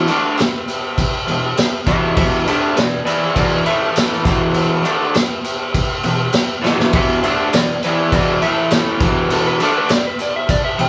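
An electric slide guitar takes a slightly broken-up solo across this gritty, menacing garage rock excerpt, riding over a bright, overdriven, double-tracked guitar riff that sits up front. Punchy, saturated drums with a rolled-off top drive the straight 4/4 feel, with a fill at 6.6 seconds, while a jingly tambourine sits in the background and a mellow combo organ holds very quiet, lightly vibrato chords. The band sounds like it is playing live in one room with moderate reverb, moving between E minor and A5.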